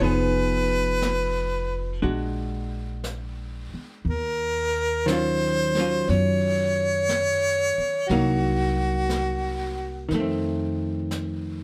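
A moderate studio ambience surrounds this short, intimate jazz ballad at 60 BPM in 4/4 with a swung eighth-note feel, tuned to A4 = 444 Hz. Up front, a clear, close-miked harmonica carries the melancholic melody with light vibrato and scooped notes, bathed in plate reverb, until it drops out at 10.1 s. Beneath it a dark, clean, compressed hollow-body archtop guitar picks out the changes from Fm7b5 through Bb7b13 and Ebm9 to Cm7b5 and F7, a woody, thumpy pizzicato upright bass anchors the low end, and a natural brushed drum kit with snare and hi-hat sits in the background.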